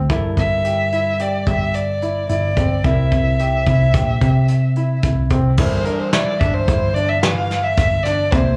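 A round, dark, picked hollow-body electric bass and a clean, compressed hollow-body jazz guitar set back in the mix open this tense, intricate progressive piece in 5/4, joined at once by clear grand piano arpeggios with audible action noise and a brushed drum kit with a fat snare and tight kick, before a woody, bowed violin with vibrato takes the melody from 0.4 s and moves into a solo at 5.6 s, the band heard as a live club gig through the venue's PA with small-room ambience and with plate reverb and slapback echo on the guitar, piano and violin.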